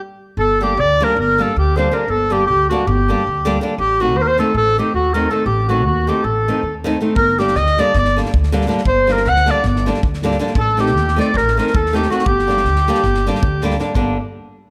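Balkan folk in a wedding-band style, this virtuosic, bittersweet excerpt in G harmonic minor drives along at 318 BPM in 9/8, with a clear, classical-style clarinet leading up front over a reedy, hollow accordion second line, a woody pizzicato upright bass, a bright fingerpicked flamenco guitar with audible finger squeak, and a small-room drum kit of punchy kick and snare entering at 7.2 seconds, all set in a moderate recital-hall reverb.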